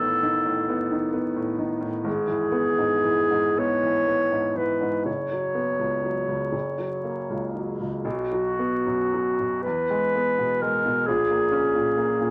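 Set in 6/8 with uneven beats and a free, rubato pulse, this short romantic classical duo for clarinet and grand piano moves at a slow, unhurried pace. The clarinet carries the melody throughout its 12.3 seconds, its tone warm and soft in attack, played in a poised classical manner and sitting up front in a modest mid range. Beneath it, the concert grand piano supplies a clear, smooth accompaniment with a deep bass reaching low into the keyboard and a slightly vintage character, also placed close to the listener. The harmony drifts from a B7 over A through E and a suspended F# chord that settles at 6.5 seconds, then passes to B5, E and an A#m7 near the end. A moderate studio ambience and a layer of vinyl crackle frame this serene passage, which is cut from a longer piece.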